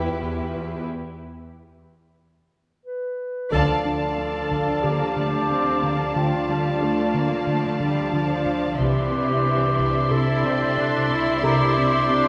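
In a straight 4/4 at 91 BPM, this eerie, ominous suspense cue, cut from a longer film score, opens on E minor before a break at 0.9 seconds drops the harmony away. Muted, veiled violins carry the melody and a second line with vibrato. Beneath them sit con sordino violas, a very quiet bowed cello section and a fat, detuned sawtooth analog bass riff in the background, while a bell-like, slightly out-of-tune celesta adds a delicate, airy glint. A distant, roomy solo clarinet enters during the break, and at 3.5 seconds the music lands in D minor with a full band accent. There, a clear French horn section holds chords behind, dark double basses join low, and dry, heavy-stick taiko drums strike. The taiko returns at 8.8 seconds as the harmony moves to Cadd9, all set in a wet concert hall reverb.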